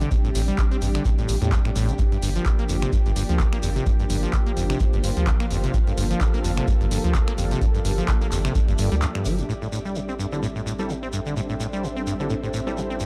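Acid house at 128 BPM in A phrygian, gritty and driving, with a swung 16th-note feel and a dark production set in digital ambience. A squelchy, resonant sawtooth acid bass riff sits up front with saturated filter plucks, pumping against a round, deep analog bass and a dry, deep electronic kick that runs until 8.7 seconds. A punchy, tape-tinged analog drum machine adds crash, finger snaps, handclaps and low-pass-filtered hi-hats, while a grainy shekere ticks along quietly in a small room. Above, a lush, warbling unison pad holds sustained Am7 and Gm7 chords with chorus, joined by a cloudy, evolving granular pad that shimmers bright through its own reverb, both breathing with sidechain pumping. After a brief break at 9.0 seconds, the music returns to Am7 as a filter sweep runs across the acid bass and a concert grand piano enters in the background at 10.3 seconds with short stabs trailing into dub echo, in this passage cut from a longer piece.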